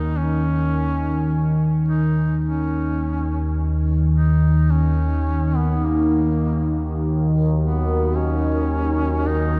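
Dark and desolate, this slow ambient excerpt moves at 53 BPM in Eb minor, hanging in a vast, echoing space with a long cathedral reverb. An up-front analog drone, evolving and sawtooth-edged with pulse-width modulation, chorus and phaser, holds the low register from Eb2 to Eb3 throughout while a filter sweep reshapes it. Above, a mellow, close-miked duduk plays a folk-style solo line between Bb3 and Eb4, its vibrato and scooped notes trailing into a diffuse ambient delay. At 7.7 seconds a deep, moody pad enters in the background, its wave-folded, ring-modulated tone adding chorused, reverberant sustained chords from Gb4 to Db5. The chord is Eb5 from the start, giving the whole fragment a still, brooding suspension.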